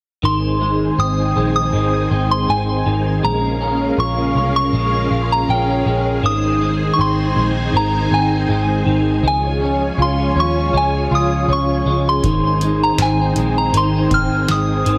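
A straight 4/4 pulse at 80 BPM carries this floating, dreamy dream pop fragment in Ab major, where a sawtooth string-machine cello patch holds soft-attack sustained chords and an edge-of-break-up electric guitar picks ensemble-chorused arpeggios through digital delay, moving from Ab through Bbm7, Ab and Db. Up front, a round, foam-muted vintage electric bass sits beside a pure, warbling FM synth bell that carries the melody high above with chorus and delay. At 12.2 s a booming analog drum machine arrives with a deep kick, crisp snare and metallic hats, all set in light reverb under a heavily compressed, radio-like sheen.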